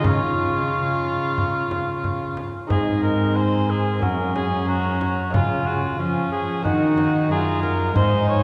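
A renaissance-style consort dance in 4/4 at 91 BPM, rustic and courtly, cut from a longer piece and heard from further back in a wet cathedral space with a 4.1-second reverb tail. A mellow, hollow alto recorder carries the melody from the background with airy chiff and vibrato, while an up-front cor anglais with light vibrato sings a second line over a delicate fingerpicked lute with doubled gut strings and a bowed viola of period gut-string tone. Beneath them a dark, nasal cello holds the bass up front, and a small, bright frame drum struck with hard hands keeps time as the harmony moves from Db through Ab and Gb, back to Db and on to Ebm, with a new section arriving at 2.7 seconds.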